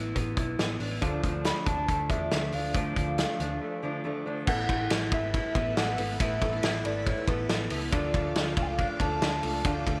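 A warbling, detuned synth lead carries the melody from 1.5 seconds, its mellow triangle-and-sawtooth tone thickened by chorus, vibrato and a slapback echo that suit this bright, nostalgic slice of jangly indie pop. Underneath, an electric guitar through a small old amp plays slightly broken-up, lo-fi arpeggios with its own slapback echo, while a fingerpicked jumbo acoustic guitar with fresh strings sits in the background and an intimate, woody upright piano adds very quiet accompaniment with audible action noise. A round, dark hollow-body short-scale bass anchors the low end, and a loose, roomy drum kit with a tight kick, medium-tuned snare, hi-hat and dark ride and crash cymbals sits up front at a straight, steady pulse. After a short break at 3.6 seconds, a shimmering vintage string machine of violins enters at 4.5 seconds with soft, sustained chords and ensemble chorus. The harmony moves between Asus2 and Dm, and a moderate echo chamber reverb casts a nostalgic glow over this excerpt from a longer piece.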